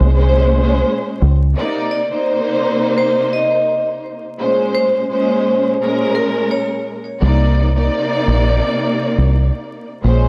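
This gritty, dark boom-bap hip-hop fragment opens with a lush, bowed string section and a round, foam-muted fingered electric bass, moving at 85 BPM in 4/4 with a light swing on the sixteenths in C phrygian. The strings carry the accompaniment throughout, their expressive vibrato colored by cassette tape and filtering, sounding distant even while they sit up front. The bass, deep and amped with transformer saturation, drops out at 1.5 seconds and returns at 7.2 seconds to anchor the close. Between 1.9 and 6.8 seconds a hard-mallet vibraphone takes the melody, its metallic ring and slow motor vibrato set in a boxy small room and trailed by tape echo. The harmony shifts between Bbm9 and Cm9, and the whole piece rests on a dry, gritty hardware sound dusted with vinyl crackle.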